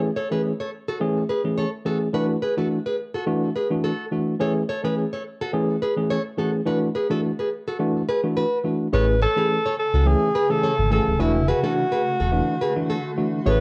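A breathy, smooth-topped alto saxophone with light vibrato takes the solo melody at 8.9 seconds, colored by cassette tape and tape echo, in this joyful, romantic afrobeats excerpt, over a clean tine electric piano accompanying through its built-in speakers from the start, a fingerpicked classical nylon-string guitar riff with finger squeak and tape echo, a deep, full sine sub bass with octave arriving alongside the saxophone, and a bright, blurred granular cloud pad drifting in the background from 9.9 seconds, all captured in a lightly reverberant home cassette recording.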